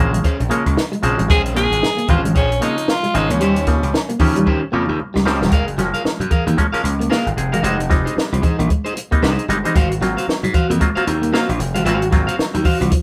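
Funk with a sly, swung sixteenth-note feel, this short cut from a longer piece opens with a raspy tenor saxophone up front, its gritty, scooped notes and light vibrato carrying the melody only until 4.1 seconds. Beneath it, a punchy, overdriven slap bass sits close and bright, while a compact cocktail drum kit with a high-tuned snare and punchy kick drives the groove alongside very quiet, damped congas played with soft hands. Two slightly broken-up electric guitars share the middle: one twangy and fingered as accompaniment, the other picked and compressed as a low riff. A hollow, nasal clav adds stringy stabs through a combo amp. A drum fill from 4.5 to 5.5 seconds leads into a new section over richer chords such as Gbmaj9 and Ab13, all heard as a band playing live in one small room.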